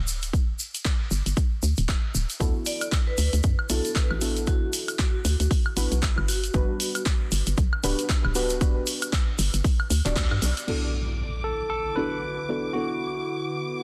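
A hollow, knocking FM bass opens this relaxed deep house excerpt, pumping against a punchy, up-front electronic kick, with a grainy tube shaker tucked in the background and an analog drum machine adding crash, handclaps, hi-hat and woodblock over a swung 4/4 groove. From about 2.4 seconds a deep, nasal chord stab with chorus and digital delay sets out soft, dark harmonies moving from D69 to Gmaj7, and moments later a smooth, metallic vibraphone with fast motor vibrato rings through a short tape-echoed melody. After a band accent, an electronic impact lands at 10.7 seconds to open a second section as the chords return to D69. Here a distant, lush violin section holds a high D6 with expressive vibrato, a warbling, nostalgic lo-fi pad with phaser and 12-bit grit breathes under the sidechain pump, and a bright, barky tine electric piano plays a clean, direct line through digital delay. The mix sits in light digital ambience with a dense, heavily limited modern master.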